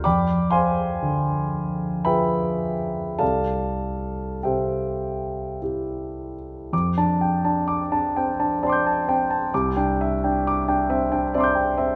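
Impressionist classical solo piano, luminous and serene, unfolds in a rubato 3/4 at a slow 49-68 BPM in this 12-second excerpt cut from a longer piece. A clear concert grand plays alone throughout, spanning C2 to G6, its deep bass and long sustain sitting up front with a natural tone. The harmony drifts from Fm6 to C in the opening section, then moves through F69 at 6.7 seconds and settles on Cadd9 at 9.5 seconds in the second section. A wet recital hall reverb with a 1.7-second decay surrounds the instrument, lending the chords a glowing, spacious halo.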